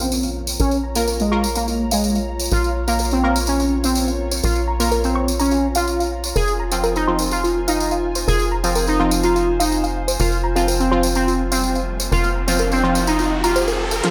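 A bright, resonant polysynth carries the melody through a filter sweep with tape echo in this dark, dramatic melodic techno cut at 125 BPM, over an evolving, warbling wavetable pad that sweeps as it sustains Bbm and Fm chords, a tight, detuned sequenced synth spinning arpeggios in the background, punchy brassy stabs treated with phaser and dub echo, a nasal, driving sequencer bass and a jingly, close tambourine, all in a moderate digital room, while an electronic impact opens at 0.0 s, a riser builds from 11.5 s, and a house drum kit with a cracking snare and metallic hats arrives up front only at 14.0 s.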